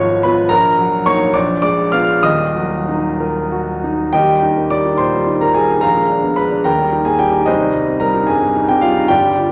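A clear, intimate grand piano sits up front in a wet recital hall, its natural tone carrying audible action noise beneath the notes. This is a romantic character piece for solo piano, stormy and passionate, moving in 6/8 with free rubato. The piano alone spans a broad range from Eb1 to F6. The opening section turns through minor-key harmony, a diminished chord and a tense dominant with a flattened ninth, before the music brightens into the major at 4.1 seconds. The second section keeps that restless dominant tension before settling and then turning toward a minor chord near the close at 7.5 seconds, as this fragment of a longer piece breaks off.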